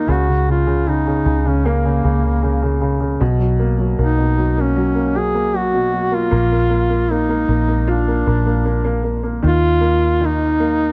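A straight 4/4 pulse at 77 BPM carries this melancholic, longing pop ballad in Eb minor, cut from a longer piece, where an up-front, mellow duduk sings a folk-style solo melody with vibrato and scooped notes over a dark, woody, boxy upright piano and a round, punchy, foam-muted vintage electric bass, set in a small room ambience as the chords move from Db5 through B5 and Bb to Eb5.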